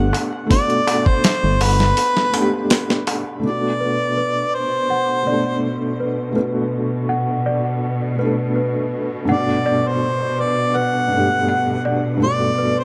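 A mellow harmonica carries the melody up front through this smoky, dark trip hop excerpt at 82 BPM in B phrygian, its tape echo trailing over a felt-muted upright piano whose boxy, intimate tone, tremolo and audible action noise run throughout. At the start a deep, rumbling detuned saw bass, gritty sampler-style drums with a thumpy kick, and a distant metal-shelled darbuka play briefly before a break at 2.0 seconds. At 3.4 seconds a lush bowed string section enters, joined at 3.8 seconds by a slightly out-of-tune, bell-like celesta, both under filter sweeps, all set in a moderate spring reverb as the chords move from Gmaj7 to Bm7 and back.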